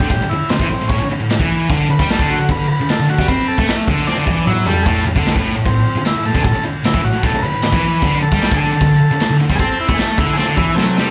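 Raw and rowdy, this live garage rock clip at 152 BPM in 4/4, cut from a longer piece, puts a buzzy, overdriven combo organ solo on top, with melody running throughout its 11.1 seconds over A5 and D5 power chords. A thick, bright fuzz guitar riff, double-tracked and up front, drives underneath beside a gritty, saturated drum kit with a punchy kick and dark cymbals, which breaks into fills at 4.1 and 10.4 seconds. It is heard through the venue's PA with light club reverb.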